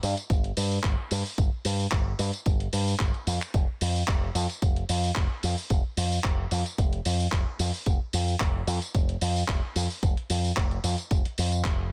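Dry and punchy, this short nu-disco excerpt pairs an overdriven electronic kick sitting up front with a gritty, tape-toned sampler-style soul kit of finger snaps, handclaps, hi-hat and tambourine that sounds re-recorded in a large room. At 111 BPM in 4/4 with a light swing on the sixteenths, a picked electric bass runs through an envelope filter between F1 and G2, its amped tone forward in the mix. The mood is sleek and groovy, with the kick joining at 0.3 seconds and all three parts holding through the end of the clip.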